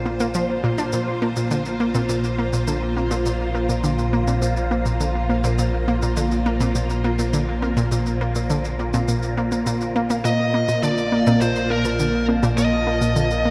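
Drenched in a cavernous cathedral reverb, this luminous, cosmic slice of sequencer-driven space music opens on a swirling, vintage string machine holding sustained chords through ensemble chorus and phaser, over a deep sine sub bass and a round, detuned analog pluck riff bathed in chorus and delay. An airy, breathy wind-like texture fades in far in the background, while overdriven shaker and congas, re-recorded in a large room and trailed by delay, keep a straight pulse. At 10.3 seconds a dark, high-gain electric lead guitar steps up front with a distorted, delayed melody, carrying the passage to its cut at 13.5 seconds.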